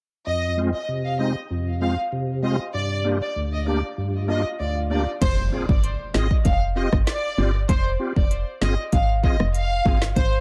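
Awash in light reverb and tape echo, this hypnotic, bouncy dancehall excerpt in F dorian moves at 97 BPM, opening with a lush, distant violin section carrying the melody over a reedy, bright tonewheel organ with key click, chorus vibrato and fast rotary speaker as the chords shift from Fm to Gm. An electronic swell rises in the background from 3.7 seconds and breaks into an impact at 5.2 seconds. At that point a round, mellow FM bass and a layered deep house kit enter, with deep kick, woody snare, smooth hats, rim clicks and crash, as the harmony returns to Fm.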